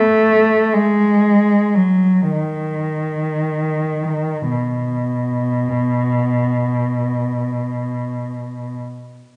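A dark, gently reverberant concert-hall sound surrounds this serene, nostalgic classical excerpt for a single bowed cello, heard up front and played solo in a free, rubato 6/8 with expressive vibrato and portamento, slowing through the first 4.5 seconds before a new section begins.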